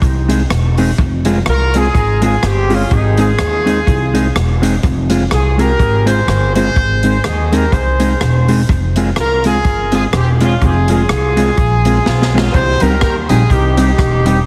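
Driving and mischievous, this swung ska excerpt rides on a woody pizzicato upright bass and an airy big-band drum kit with a high-tuned snare, punchy kick and analog delay, while a dark, clean electric guitar enters at 0.3 seconds and a roomy horn section with light vibrato and analog delay carries the melody from 1.5 seconds, the mix wrapped in vinyl crackle and a heavily compressed radio sound until a drum fill at 12.1 seconds leads into a new section.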